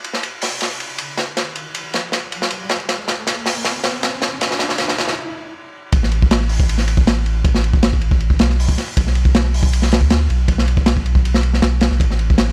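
Drum and bass with a jungle edge at 158 BPM, this frenetic, atmospheric cut opens on a crunchy, saturated breakbeat kit with dark cymbals, a tight kick and a medium-tuned snare playing a fill under a faint electronic riser, pauses briefly at 5.2 seconds, then drops at 5.9 seconds into a deep, round dub sub bass moving between A1 and D2, all captured dry with a gritty hardware character.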